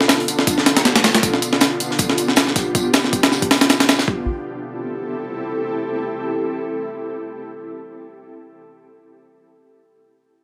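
A gritty, compressed breakbeat kit sits up front with a thumpy kick and high-tuned snare, driving this nostalgic, raw drum and bass and jungle excerpt in A minor at 158 BPM with a light swing on the sixteenths. Behind it, a loose acoustic kit with a fat snare and tambourine plays in the background in a small room, and both kits stop around 4.2 seconds. An ethereal, airy pad with slow attack, ensemble chorus and tremolo sustains mellow chords from Bm7b5 to Am7 until 8.1 seconds.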